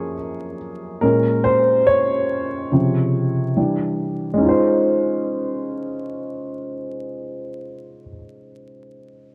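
Worn, warbling old tape with vinyl crackle, drifting pitch and a moderate plate reverb frames this dreamy, cosy hip hop fragment with a gentle swing, where a dark, woody upright piano sits up front and intimate, its action noise audible through a cassette-tape, low-pass tone, playing alone through chords from Gbmaj9 to Dbmaj9 with a filter sweep across its first 4.4 seconds.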